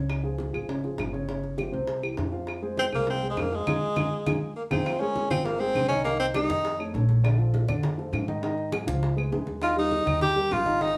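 Sultry and driving, this excerpt from a longer Afro-Cuban jazz piece moves at 202 BPM in F minor. A dark, mellow baby grand piano and a thumpy, gut-strung pizzicato upright bass form the accompaniment, while ringing congas, tight high-tuned bongos set in the background and woody, band-limited claves carry the percussion. An up-front tenor saxophone with vibrato takes the solo melody from 2.8 s and returns at 9.6 s, a drum fill and band accent arrive at 3.7 s, and the small live room adds a wet sheen while audible action noise gives the piano an intimate presence.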